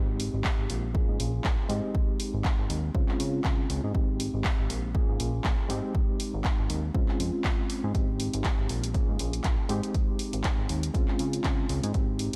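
A barky, reedy electric piano and a plucky analog bass open this funky, feel-good excerpt of filtered disco house at 0.0 seconds, moving through Abmaj7, Bbm7 and Dbmaj7 in Ab major at 120 BPM with a 16th-note swing. The lightly overdriven piano carries the accompaniment, colored by a medium tremolo, a phaser, sidechain pumping and a low-pass filter, while the sawtooth-and-square bass has a fast attack and decaying filter pluck, pumping under its own low-pass filter. An analog drum machine with handclaps and hi-hat comes in at 0.2 seconds, and an up-front electronic kick joins at 0.4 seconds, both re-recorded in a large room. A filter sweep runs across the full 12.4 seconds, and light reverb and digital ambience give the mix a gentle sense of space.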